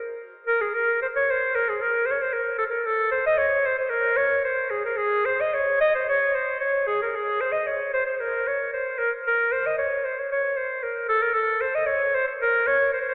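This short cut from a longer piece has a thin, telephone-like sound, set in the long, wet reverb of a church or concert hall that lingers for about 3.4 seconds. It is Balkan folk music in Bb minor at 113 BPM in a straight 2/4, with a mood that is both fiery and bittersweet. A lone clarinet carries the whole performance, entering at 0.5 seconds and playing until 13.1 seconds. Its tone is clear with a smooth top, played in a classical style and placed up front, moving within a narrow span from Ab4 to Eb5. After a brief opening passage, a new section begins at 2.6 seconds and returns at 11.1 seconds, carrying the solo line to its close.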